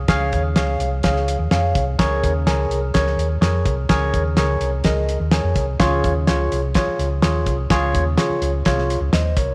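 This short excerpt of uptempo 1960s-style soul opens on a dark, round hollow-body short-scale bass, fingered and amped, with the drum kit and electric piano joining almost at once. The mood is uplifting and joyful, set in a straight 4/4 that moves from Db to Bbm7 at 2.0 seconds. Up front, a bright, barky tine electric piano, lightly overdriven through a combo amp and coloured by phaser, carries the accompaniment. The cloth-damped drums sound thuddy and close, with a fat snare, tight kick, hi-hat and a rolled-off top, as if played in a small room. A moderate echo chamber reverb gives the whole a roomy, vintage sheen until the cut at 9.5 seconds.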